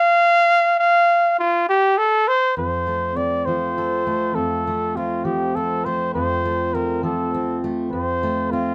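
In a 6/8 with a straight feel, this nostalgic folk fragment opens with a mellow trumpet, played alone and up front in a classical style with light vibrato. At 2.6 s a fingerpicked jumbo steel-string acoustic guitar enters beneath it, full-bodied and warm with fresh strings, and carries the accompaniment to the close. Light reverb frames the two as a band playing live in one room, giving the recording a warm sound.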